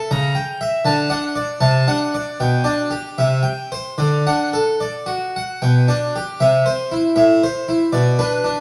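Radiant and serene, this short passage from a longer piece is a baroque-style suite movement for solo harpsichord, unfolding in 6/8 with a free, rubato feel. The instrument is a French-style harpsichord with two sets of strings, heard close-miked and up front, its plucked tone full and dry at the source. Around it sits a wet stone room whose reverb lingers for about 1.3 seconds, while vinyl crackle runs through the recording. The opening phrase moves from a tense C#dim7 through D and D7/C toward G/B, C and D. At 5.6 seconds a new section begins on G/B and turns through C and Am before arriving at Bm. The harpsichord spans from its low register up to its upper reaches, sounding alone from start to finish.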